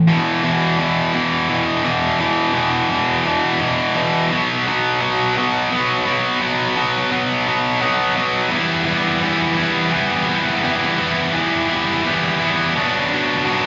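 Heard through a club PA with a lush hall reverb and a dulled top end, this fragment of a longer rock performance has a dark, brooding mood in 6/8 at a slow 57 BPM in E minor. A tight, bright, distorted electric guitar plays alone and up front throughout, picked and double-tracked with slapback echo, spanning E2 to E4. It moves from E5 and B5 power chords to fuller Em and Bm chords at 8.5 seconds.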